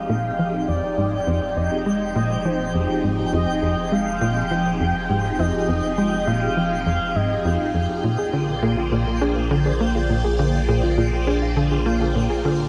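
Awash in shimmer reverb and a moderate plate, this mysterious, hypnotic excerpt of ambient, sequencer-driven space music in F dorian moves at 102 BPM in a straight 4/4, with a tight, punchy sequencer bass riff driving beneath a swirling, phased vintage string machine holding chords over Fm7 and Bb7, a deep sub bass fading in throughout, a twinkling granular texture sparkling on G5, and a smooth, expressive synth lead carrying the melody with vibrato until 8.0 s before a soft, round pluck takes up gentle arpeggios from 8.2 s.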